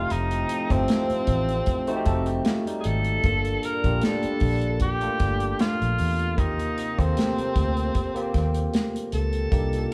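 A breathy, whispered tenor saxophone with scooped notes and vibrato carries the melody up front in this smooth, cinematic slice of lush 1970s-style soul at 76 BPM with a gentle sixteenth-note swing, backed by a bright, barky, lightly overdriven tine electric piano, a mellow trombone section playing tight stabs in the background, a dark, foam-muted fingered electric bass, and a dark-toned studio drum kit with a tight kick, while a slightly broken-up, lo-fi electric guitar riff appears from 1.9 to 3.2 seconds over chords moving from F7 to Gm7 to Eb69, all sitting in a band playing live together in a moderate stone room.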